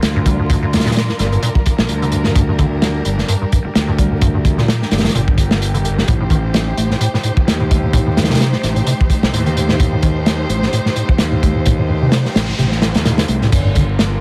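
Gritty, energetic breakbeat built on a crunchy, saturated drum kit up front with dark cymbals and a tight kick, a growly fuzz-overdriven fingered bass, a rubbery square-wave acid riff with a resonant filter pluck and digital delay, and lush bowed strings holding sustained chords that pump under sidechain, all over vinyl crackle and light reverb, with a background noise sweep entering at 11.9 seconds in this cut from a longer piece.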